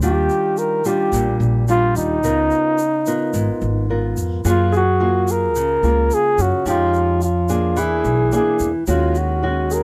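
Bossa nova at 108 BPM in a straight 4/4, breezy and sunny, this excerpt sets a breathy, dark flugelhorn up front, its vibrato and scooped notes carrying the jazz-style solo melody over thumb-plucked nylon-string guitar with fresh strings, woody pizzicato upright bass and a grainy, bright egg shaker. At 4.4 s the music settles into F# major, and at 4.7 s a concert grand piano enters in the background with natural, deep-bassed tone. The sound is dry and close, like a 1970s studio recording with little reverb.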